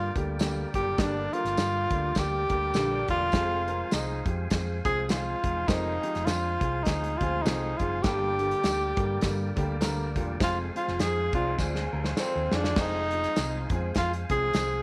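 Driving and urgent, this uptempo 1960s-style soul cut in F dorian swings at 102 BPM, with a breathy, up-front tenor saxophone soloing through its scooped, vibrato-laden melody with slapback echo until 12.8 seconds, over a woody, slightly detuned upright piano with audible action noise and a round, dark hollow-body electric bass. A punchy acoustic drum kit with a medium-tuned snare drives the groove and plays a fill from 11.6 seconds, while a jingly tambourine, a fat tonewheel organ with fast rotary speaker and overdrive, and a very quiet baritone saxophone riff sit behind. An electric guitar through a small old amp, slightly broken-up and lo-fi with spring reverb, adds brief riffs near 2.9 and 11.3 seconds in a small, lightly reverberant room.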